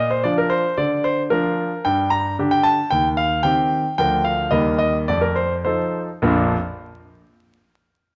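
In a straight 2/4 at roughly 102-113 BPM, this graceful, cheerful classical-period sonatina in Bb major unfolds on a solo concert grand piano, whose polished, up-front tone pairs deep bass with a short sustain across a range from Bb1 to Bb5. The harmony moves through Cm/Eb and Eb to an F7 that resolves home to Bb at 6.2 s, where a new section begins just before the piano stops at 6.6 s. A moderate recital-hall reverb surrounds the instrument, with a vinyl crackle beneath this fragment cut from a longer piece.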